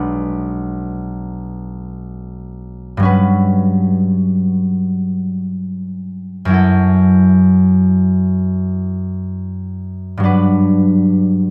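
Gentle and wistful, this brief classical excerpt for solo concert harp unfolds in free time, its warm, ringing fingerpicked tones sitting up front through close, detailed miking in a moderate recital-hall reverb as the harmony drifts from Bm6 through Gmaj7#11 and F#m7 to Gmaj7 at 10.3 seconds.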